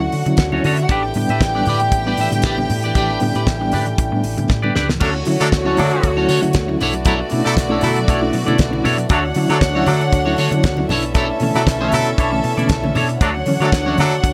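Danceable and celebratory, this disco excerpt in 4/4 opens with a chamber string section playing a second line, phaser-treated clean guitar, a reedy electric piano with fast tremolo, distant French horns holding sustained chords and a round, dark hollow-body bass, joined at 0.1 seconds by a dry, damped drum kit with gated reverb and very quiet, hard-handed congas. After a drum fill, punchy horns enter at 5.0 seconds with up-front stabs in octave doubling, while the harmony alternates between Dmaj7 and Bm11. The fat snare, twangy picked guitar and intimate sul tasto strings sit in a small room ambience.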